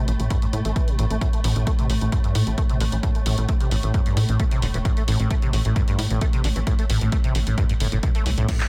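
Driving peak-time techno at 132 BPM in A minor, this short industrial-edged cut from a longer piece rides an up-front, layered electronic kick over a tight, saturated sequencer bass with a ring-modulated, plucky sawtooth bite. A squelchy, resonant acid saw riff carries a filter sweep and ensemble chorus, while a tense, detuned granular drone swarms alongside with its own reverb and slow-attack sustain. A tape-warm analog drum machine adds hi-hats, handclaps, toms and crash cymbal, and the hats, toms, cymbals, basses and drone all pump with sidechain compression in a dry overall sound.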